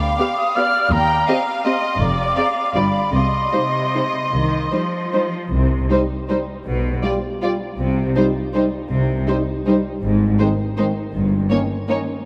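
Sweeping and elegant, this rubato orchestral ballroom waltz in 3/4, cut from a longer piece, sets a focused, bowed violin melody over a second violin line with light vibrato, a lush viola accompaniment, and clear cello and up-front double bass sections carrying the bass, while an airy silver flute with a crisp attack floats high above until 5.3 seconds and mellow French horns add sustained chords from 5.9 seconds, the whole ensemble set in a vast, echoing cathedral reverb.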